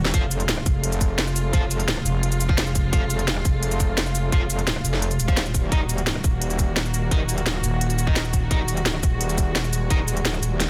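A metallic, chorused wobble bass with tube saturation and sidechain pumping drives this mechanical, aggressive dark technical drum and bass excerpt at 172 BPM in F phrygian. A tight, up-front electronic kick and a crisp kit of cracking snare, hi-hat, rim click and cabasa hold the beat, while a thick, growling FM bass bursts in at 2.1 and 7.6 seconds. Bright, double-tracked fuzz guitar stabs with tape echo sit in the background, and intimate bowed strings with a soft attack sustain Fm, then Ebm from 5.7 seconds, all within a dense, heavily limited, dry mix.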